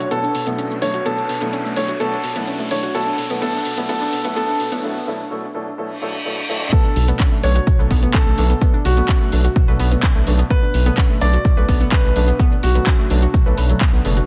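A punchy, overdriven electronic kick drum lands up front at 6.7 seconds in this expansive, driving progressive house piece at 127 BPM in B minor, where a riser and reverse cymbal build toward the drop over a house kit of cabasa, handclaps and bright hats, joined from 7.0 seconds by a round analog bass with a deep, wave-folded tone, alongside soft, detuned pluck arpeggios with chorus, boxy dark piano stabs and a natural-sounding baby grand melody, the bass, pluck and pianos all pumping to the sidechain within a dense, heavily limited master.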